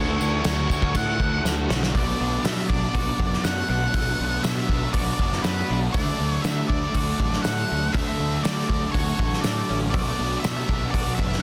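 Shoegaze and dream pop rock at 120 BPM, blissful and wistful, in which a dark octave-fuzz lead guitar with slapback echo carries the melody over twangy arpeggios from a very quiet, compressed twelve-string electric guitar and a haze of riffing guitars (a bright, double-tracked distorted electric, an overdriven semi-hollow with reverse reverb set in the background, and a very quiet thick fuzz guitar), while a growling, punchy fingered electric bass and an up-front loose indie drum kit with a pumping room sound, alongside a jingly tambourine, drive a dense, heavily limited mix that moves from Dmaj7 to Bm7 after a drum fill at 1.4 seconds.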